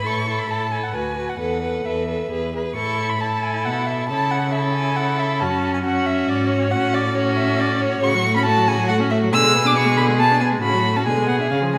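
A scoring stage's generous reverb surrounds this brief excerpt from a quick classical-period movement for string quartet, a spirited and graceful piece in A major at 137 BPM in 3/4, played with a rubato feel. Up front, the first violin carries the melody with a warm, expressive tone, using vibrato, soft attacks and portamento as it sings high above the ensemble. The second violin adds a rich, focused second line in its middle register. The viola fills in the accompaniment with a clear, smooth and even sound, while the cello, close and intimate, plays the bass sul tasto with an airy bow, light vibrato and soft attacks. After a short opening passage, a new section begins at 2.8 seconds, moving through A, F-sharp minor and G-sharp diminished harmonies before the clip is cut off at 11.8 seconds.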